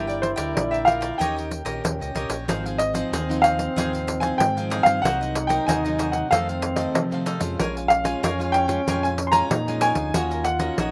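Lively and nostalgic, this dry, open-air samba and choro snippet at 94 BPM in Ab major features a smooth, vintage-toned grand piano melody over a mellow jazz-style trombone second line with vibrato, along with a crisp picked cavaquinho and a warm fingerpicked classical nylon-string guitar in the background, both carrying slapback echo, a bright, direct fingered electric bass, and a jingly, close pandeiro played with hard hands that enters at 0.1 seconds.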